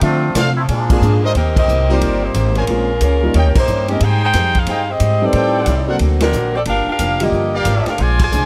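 This is a brisk big band swing clip in E-flat major at 181 BPM, swinging and brassy from the first beat. It opens with a short solo passage from the muted trombone section, nasal and vintage-toned with a straight mute, soft attack and light vibrato. Beneath it, the rhythm section is already under way: a pizzicato upright bass with a woody, up-front sound; a big-band drum kit with a punchy kick, medium-tuned snare, hi-hat, ride and crash; a warm baby grand piano; and a boxy, picked ladder-braced acoustic guitar with old strings, tucked in the background. The clear trumpet section enters at 0.4 seconds with stabs, and the bright saxophone section takes the melody from 0.9 seconds, smooth on top with light vibrato. The trombones drop out at 1.2 seconds as the harmony moves through chords such as Eb6, Bbm9, Abmaj7 and D7b13, with full-band accents punctuating the phrase. The sound is close and detailed with little reverb, giving the ensemble a dry, immediate presence.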